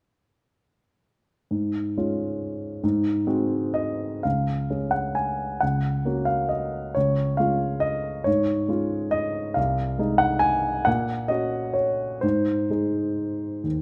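Sparkling and elegant, this classical piano waltz moves in 3/4 with a rubato feel, its tempo drifting between 118 and 145 BPM in D-flat major. A solo grand piano carries everything, entering at 1.5 s and playing through to 13.8 s, spanning the range from C2 up to Ab5. The instrument sounds intimate and up front, with short sustain and audible action noise that brings the listener close to the keys. An opening passage leans on D-flat and A-flat seventh harmony before a second section begins at 4.2 s, moving through G-flat and A-flat colors and coming to rest on an A-flat chord. Moderate recital hall reverb surrounds the piano, and the passage is cut from a longer piece.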